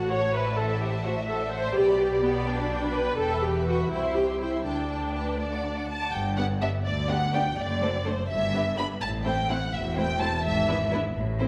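A lively passage from a classical-period movement for string orchestra opens at once with the full ensemble in 6/8 at 84 dotted-quarter beats per minute, a cheerful G major piece with a straight feel. A dark-toned first violin section carries the melody up front and close, singing with vibrato and expressive portamento, while a second violin section weaves a softer, smoother line above and around it. The violas fill the middle with a steady, even accompaniment placed up front, and cellos and double basses share a rich, lush bass. The harmony moves through chords such as G/B, Em, C and Dsus4 before a new section begins at 6.1 seconds on G, later reaching Am and E7/G#. The melody drops out at 10.9 seconds as the other strings carry on to the cut at 11.5 seconds, all heard within a generous scoring-stage reverb.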